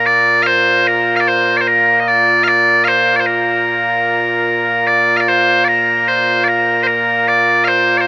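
The recording has a light reverb around a single, up-front bagpipe that sounds bright and piercing, cut from a longer piece of Scottish traditional pipe music. The bagpipes play solo and continuously through all 8.1 seconds, ranging from Bb2 up to F5. The tune sits in Bb major in 3/4 at 75 BPM, with a straight, unhurried feel. The mood is stirring and proud, carried by the loud, bright tone of the pipes filling the space alone.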